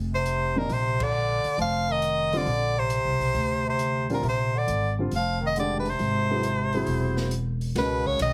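Swung eighths at 136 BPM in 4/4 carry this open, spiritual modal jazz excerpt in Bb mixolydian, where a woody, thumpy pizzicato upright bass on gut strings starts at 0.0 s, a bright, close-miked soprano saxophone sings the up-front melody with vibrato and scooped notes, a clear bass clarinet weaves a second line with light vibrato, an acoustic drum kit with dark cymbals and a boomy kick joins at 0.3 s, and a concert grand piano with deep bass comps from 0.6 s, all set in a moderate club reverb with a heavily compressed, radio-like sound and a band accent at 0.9 s as the harmony moves from Bbadd9 to Ab7b13 and Db9sus4.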